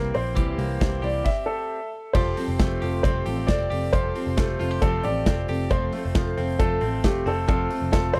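A woody upright piano with audible action noise carries the melody up front in this bright, youthful jangly indie pop excerpt at 135 BPM in F major, backed by a full-bodied dreadnought acoustic guitar, twangy, scooped clean electric guitar arpeggios and a dark, round foam-muted picked bass. A big rock drum kit with a punchy kick and bright cymbals drives the 4/4 groove, dropping into a stop from 1.3 to 2.1 seconds, after which a reedy, worn, slightly out-of-tune electric piano joins very quietly as the harmony shifts from C7 to Fadd9. The sound is dry and close, in the manner of a 1970s studio recording.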